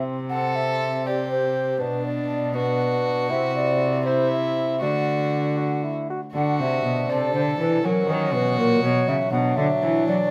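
In a straight 6/8 at 80 dotted-quarter beats per minute, this stately, courtly renaissance-style consort dance in D mixolydian is led by a hollow tenor recorder with breathy chiff and gentle vibrato, while a nasal, period-style violin adds a second line from 0.3 s. Up front, a rich gut-strung cello carries the bass, a dark bassoon sits in the background, and a fingerpicked Celtic harp rings softly beneath. The chords move from C through Bm and D to an F#7 before settling on Bm, all bathed in a moderate stone-room reverb across this 10.3-second excerpt from a longer piece.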